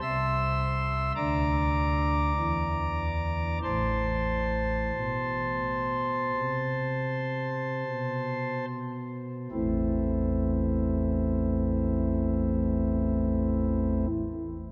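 Dark and solemn, this chorale-style classical piece for pipe organ moves at a slow, stately pace in a straight four. The organ plays alone from 0.0 to 14.1 seconds, using soft flute stops in a warm, romantic voicing that spans from A1 up to E6 and sits up front in the mix. The opening passage gradually slows down until 9.5 seconds, where a second section begins. The harmony steps through a rootless Am/C, Bb/D and Dsus2/E before settling on Am. A cathedral reverb with a long 4.2-second decay surrounds the instrument, and the production has a dark, warm character, as if this fragment were lifted from a longer work.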